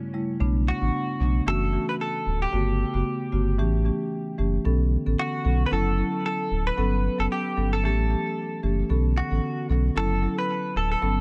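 A bright, twangy clean electric guitar carries the melody in this sultry, smooth afrobeats passage, its picked, compressed tone recorded direct and dressed in lush chorus and digital delay. Beneath it, a woody marimba played with medium mallets on rosewood bars supplies close-miked, dry accompaniment from the opening moment, sitting up front in the mix. A deep sub bass doubled at the octave enters at 0.4 seconds, its sine-and-triangle tone full, sustained and quick to speak. The guitar joins at 0.7 seconds over a relaxed, lightly swung 16th-note feel in 4/4. The harmony cycles through Bm9, F#m7, Gmaj9#11 and A7, lending the groove a lush, jazz-tinged colour within a small-room ambience, and the clip is cut from a longer piece.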